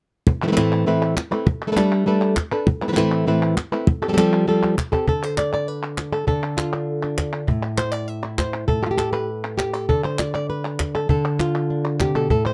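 Flamenco at a driving 200 BPM in straight 4/4 and A minor, this intense, passionate passage is cut from a longer piece and tuned to A4 = 437 Hz. Up front, a fingerpicked acoustic flamenco guitar with a dark, old-stringed tone carries the melody from 0.3 seconds, ranging from A2 up to E5 over an opening progression of Amadd9, Gadd9 and Fadd9. A close, woody cajon with faint snares drives the percussion beneath it, and crisp, dry palmas hand claps sit lower in the mix. A drum fill at 4.5 seconds leads into a second section at 5.1 seconds, where the guitar moves away from set chords before settling on A5 and then Dm. Close, detailed microphones and light reverb give the recording an intimate, present sound.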